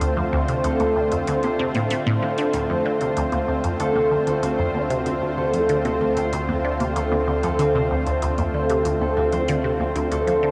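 A straight 4/4 pulse of electronic hi-hat and congas with metallic, delay-echoed hats carries this expansive, mysterious excerpt of sequencer-driven ambient space music, where a squelchy, resonant blip pluck riffs up front through phaser and analog delay, a concert harp rings out fingerpicked arpeggios with its own delay, a thick, detuned unison pad holds bright chorused chords on Dm7, and a round, deep analog bass sits low beneath, all bathed in a lush hall reverb and captured as a home cassette recording.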